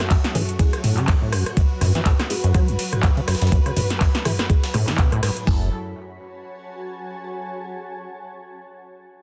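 A short cut of hypnotic acid house opens on a dark, woody string section pumping against the sidechain, a muted dub chord stab filtered through phaser and tape echo in the background, an up-front electro drum machine with punchy snare, claps and metallic hats, and a cloudy granular pad glowing above. A squelchy, resonant saw acid bass riff and the stab both run filter sweeps through the first 5.5 seconds, alongside a thumpy 12-bit kick and hi-hat, while an overdriven breakbeat kit adds a gritty snare, hats and ride from further back in a dense, heavily limited mix. At 5.5 seconds a round sine sub bass drops in briefly, and the blurred pad carries on alone until 7.4 seconds.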